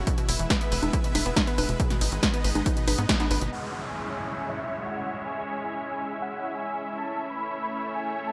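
A huge, thick supersaw lead enters at 3.5 seconds in this bittersweet, emotional uplifting trance excerpt at 139 BPM in C# minor, its airy, detuned, compressed tone carrying vibrato, sidechain pumping, a filter sweep and dub echo as the harmony moves from C#m to A. Before it arrives, a lush unison pluck spins sawtooth arpeggios through delay, a tight, nasal sequencer bass drives underneath with a fast, decaying filter pluck, and both pump with the sidechain over chords of E and G#m. A bright supersaw pad holds sustained chords with a slow attack and long release for the whole passage, pumping and filtered. Up front, an overdriven electronic kick with an analog punch anchors the opening bars, while a punchy analog drum machine with filtered congas, hi-hats, snare and crash runs throughout, with a band accent landing at 3.1 seconds. An electronic downlifter sinks beneath the lead's entry, and a moderate, lush digital hall reverb gives the mix a spacious sheen.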